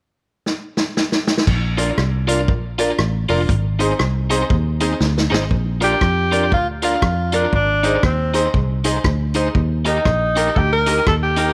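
Cheerful and upbeat, this short ska excerpt moves with a swung eighth-note feel in 4/4. A vintage drum kit with dark cymbals and a punchy kick kicks things off at 0.5 seconds with a fill, and a dark, round, foam-muted fingered electric bass sits up front from 1.5 seconds over a Bb to Ab progression. A bright, twangy electric guitar at the edge of break-up adds compressed, picked accompaniment with vibrato and slapback echo, while a woody, slightly detuned upright piano supplies boxy stabs in the background. After a second drum fill, a clear tenor saxophone with light vibrato takes the melody at 5.8 seconds, sounding roomy and distant yet placed up front in the mix as the chords move toward Eb. Light studio reverb rounds out the mix, while the drums keep a natural, small-room character.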